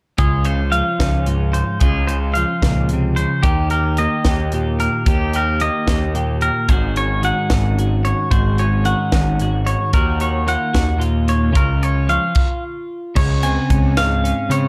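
A dark production with light reverb frames this wistful, playful slice of math rock and midwest emo, moving at 74 BPM in a straight 6/8 in Db major, tuned slightly below standard pitch. A twelve-string electric guitar supplies bright, twangy, compressed accompaniment beneath a bright, twangy, scooped lead guitar whose spring-reverbed arpeggios sit up front, while a growly, fuzz-drenched picked bass and a crisp fusion kit with a high-tuned snare and punchy kick drive the chords from Dbmaj7 through Eb, Ab7sus4 and Ebm7. The band halts together at 12.4 seconds, then returns on Dbmaj7 at 13.2 seconds for a brief new section before the clip is cut off.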